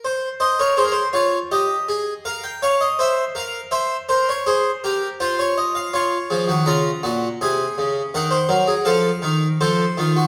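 In a straight 4/4 pulse, this serious, contemplative excerpt from a baroque-style three-part fugue features a solo harpsichord playing from 0.0 to 10.3 seconds. It spans Bb2 to Bb5 with a brilliant, full, plucked French-style tone from three sets of strings. The close-miked harpsichord sits up front in a recital hall's generous reverb as the harmony moves from Fm through Bbm and Ab/C to close on F.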